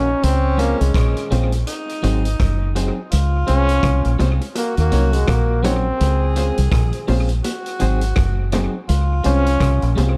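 Uplifting and laid-back, this roots reggae excerpt in Db major sits at 83 BPM with a swung sixteenth feel. A brilliant trombone carries the melody with light vibrato and tape echo, joined by a breathy, whispered tenor saxophone on the second line, while a deep, round dub bass sits up front under a punchy vintage kit with rim clicks and analog delay. In the background, a slightly broken-up electric guitar and a barky reed electric piano with fast tremolo fill out the dark, lightly reverberant mix, and tight, high-tuned bongos join at 4.2 seconds.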